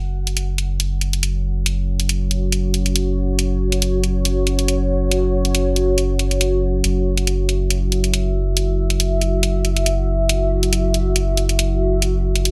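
Lightly reverberant and cavernous, this dark deep-dubstep excerpt rides a swung half-time feel, as a round, tube-saturated sub bass sounds from 0.0 seconds, an overdriven, layered electronic hi-hat enters at 0.3 seconds, and a moody, detuned sawtooth pad with chorus and a moving notch arrives at 0.5 seconds to hold slow-blooming sustained chords.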